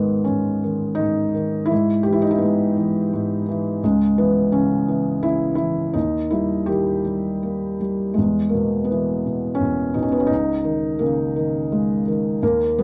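A rubato 3/4 metre gives this classical solo piano fragment, cut from a longer piece, a lyrical, cool and moody drift. A felt-muted upright piano carries everything alone from 0.0 to 12.8 s, its thick-felt tone soft, mellow and intimate, sitting up front in the low and middle registers. A moderate small-room ambience surrounds it, and the production is dark overall.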